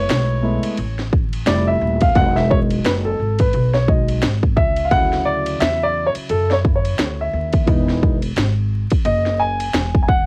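Jazz-hop with a relaxed, cool mood, this short cut from a longer piece moves at 87 BPM in 4/4 with a 16th-note swing, centered in E major. A dark grand piano carries the whole clip as a solo, its mellow, vintage tone and long sustain colored by cassette tape as it moves from a rootless F#m11 through Fmaj9, Emaj9 and Dmaj9 before returning to Emaj9 at 7.7 seconds. Beneath it, a pizzicato upright bass with steel strings sits low and up front, its sound woody and acoustic. An electronic, layered techno drum kit enters at 0.1 seconds with a heavy kick, a cracking snare, smooth hi-hats and ride cymbal, also treated with cassette tape. The room is dry, with little reverb, and the home cassette recording carries a bed of vinyl crackle.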